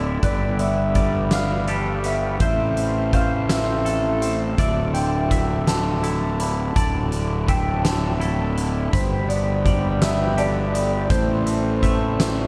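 Cinematic and brooding, this post-rock passage cut from a longer piece moves at a slow 55 BPM in 6/8, drifting through G, Am and Dsus2 in a dreamy mix soaked in a huge ambient reverb. A reedy, breathing pedal harmonium holds sustained chords in the background beneath two clean twangy electric guitars playing arpeggios with analog delay, the higher, more brilliant one also bathed in lush chorus, while an overdriven, round fuzz bass sits up front. From 0.2 seconds a slightly broken-up guitar through a small old amp carries the melody with spring reverb and delay, and a huge arena drum kit with a fat snare and punchy kick drives from the front of the mix.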